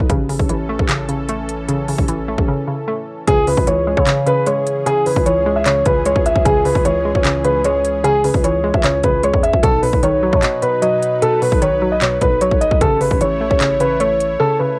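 A lightly reverberant home cassette recording carries this eerie, hard-hitting half-time trap excerpt at 151 BPM in C# minor, where a hollow, nasal square-wave pluck with chorus and a smooth background pad of detuned sawtooth chords open over a growling, buzzy 808-style bass and an up-front electronic drum kit of hard-clipped kick, crisp hi-hats and handclaps, before a dark, mellow concert grand piano takes the melody at 3.3 seconds and the drums drop out at 14.4 seconds.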